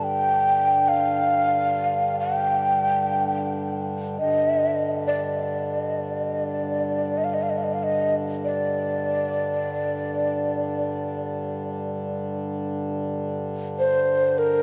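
A breathy xiao carries the melody from the start, its end-blown bamboo tone close-miked and up front, with vibrato, tongued notes and an unsteady, human quality, ranging from Bb4 to G5 and trailed by tape echo. Beneath it, a pedal harmonium holds a reedy, mellow drone between G2 and D3, its breathing sound quieter than the xiao yet still up front. This is meditative world music in free time, haunting and spacious, with both parts sounding together across the full 14.6 seconds. The production is dark and bathed in a huge ambient reverb that lets every phrase hang in the air. Cut from a longer piece, this fragment feels like a suspended moment of calm reflection.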